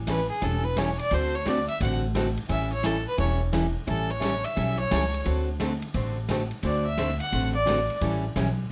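Swinging and playful, this short western swing passage from a longer country piece moves with a lively swing feel as a fiddle takes the solo throughout. The fiddle sits up front, bowed by one player with a clear, focused tone and light vibrato, riding over changes that shift between A7 and D7. A bright, full-bodied dreadnought acoustic guitar is picked up front alongside it, with a touch of finger squeak adding life to the accompaniment. Underneath, a pizzicato upright bass gives a woody, thumpy pulse on steel strings, and a polished big-band drum kit keeps time in the background, its dark cymbals, medium-tuned snare and punchy kick sounding airy, as if in a big room. A moderate club reverb wraps the ensemble in its space.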